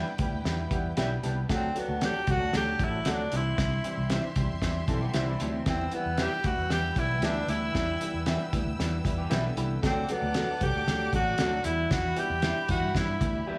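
Uptempo 1960s-style soul at 115 BPM, driving and urgent, cut from a longer piece, with a breathy, whispered tenor saxophone carrying the melody up front from 1.6 s over chords moving from Em through D and C and back. A muffled, cloth-damped drum kit with a fat snare and tight kick sits close alongside a punchy fingered electric bass, while a woody upright piano with audible action noise supplies accompaniment and brief fills. In the background, a lush bowed violin section holds a second line, one twangy, slightly broken-up electric guitar adds bright stabs, and a second guitar through a small old amp plays short riffs around 4.9 s and 9.2 s, all in light studio reverb.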